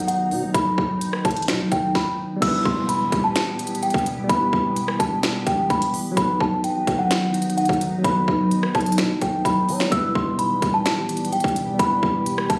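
A dark, menacing half-time trap excerpt at 128 BPM in E harmonic minor opens with a delicate, bell-like celesta melody over a glassy, warbling FM pad, a growling, buzzy 808-style bass and up-front trap drums with a hard-clipped kick, sharp snare, crisp hats, finger snaps and rim clicks, before a worn, slightly out-of-tune electric piano and a background electronic impact arrive at 2.4 seconds as the chords move between B and Em, all set in light digital ambience with a phone-recorded, compressed room sound.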